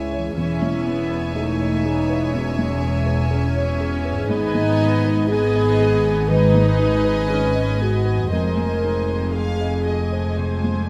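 Cinematic, emotional film score for orchestra, sorrowful and longing at a rubato 60 BPM, where mellow French horns hold sustained chords over a bass of rich cellos and double basses, while a distant, clear violin section floats a sul tasto melody on G#5 above a close second violin line, an intimate viola accompaniment and a thick-felted upright piano whose action noise sits in the background, a very quiet thumb-plucked harp rings out arpeggios, and moderate scoring stage reverb surrounds chords moving from E6 through G#m to Fm7 in this 10.9-second cut from a longer piece.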